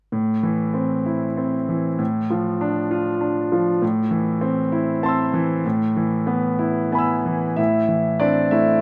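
Neoclassical minimalist piano in a reflective, wistful mood, unfolding in 6/8 with a free, rubato feel. A single concert grand carries the piece alone from 0.1 to 8.8 seconds, sitting up front with a clear, smooth tone, deep bass and long sustain that give it a vintage character. The harmony moves gently from A minor through D minor over an A bass and back, then leans on an E major chord over A before settling on A minor again at 7.6 seconds, where a brief new section begins. The playing spans a generous range, from low notes in the bass to high notes in the treble. Light studio reverb surrounds the instrument, while the rough home-demo mix carries a faint mains hum beneath it, and the passage is cut from a longer piece.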